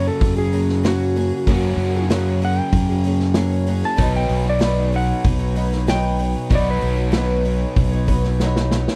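A straight, steady 4/4 pulse anchors this short folk rock and heartland rock passage, cut from a longer piece, with a nostalgic, warm mood. A vintage acoustic drum kit enters at 0.2 seconds with a punchy kick, medium-tuned snare and hi-hat, its top rolled off and its small room pumping up front, and it closes on a drum fill from 8.4 seconds. The fingered electric bass sits just as far forward, dark, round and amped, while a picked twelve-string acoustic guitar adds woody, boxy, shimmering octave-doubled accompaniment with the dull ring of old strings. A crunchy, double-tracked overdriven guitar plays a picked riff beneath, and a clean, dusky lap steel carries the melody as a fingered slide solo until 8.4 seconds. The harmony moves from F#add9 to Badd9, and the whole mix sounds dry and close.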